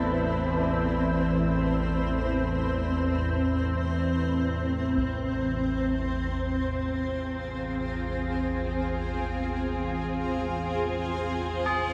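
A cloudy, detuned granular pad and a warbling, wave-folded analog drone open this dark, cavernous ambient drone excerpt in free time, both up front over an Amadd9 chord. Metallic tubular bells play solemn arpeggios in the background through a diffuse delay and shimmer reverb, and the pad carries shimmer reverb as well. At 5.0 s the harmony moves to Fm as a very quiet taiko ensemble with hard sticks sounds briefly, while the chorused drone holds low beneath a dreamy mix soaked in a huge, 7.7-second reverb, fading out from 10.9 s.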